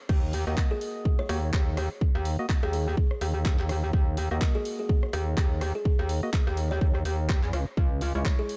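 A metallic, aggressive wobble bass sits up front in this gritty, swaggering bass house excerpt, its FM tone saturated with tube grit, thickened by chorus and shaped by sidechain pumping. A punchy, tape-tinged electronic kick drives the 125 BPM 4/4 groove with a 57% swing on the sixteenths, backed by a layered house kit of crash cymbal, handclaps, hi-hat and rim click that sits lower in the mix. A hollow, organ-like stab with a mellow, percussive decay enters at 0.5 seconds, colored by chorus, delay and the same sidechain pumping. At 0.7 seconds a bright, buzzing kalimba joins in the background, its short woody plucks echoed by delay. The harmony rests on Eb minor in a Phrygian cast before shifting to Db minor at 7.8 seconds, all within a dark, dry production.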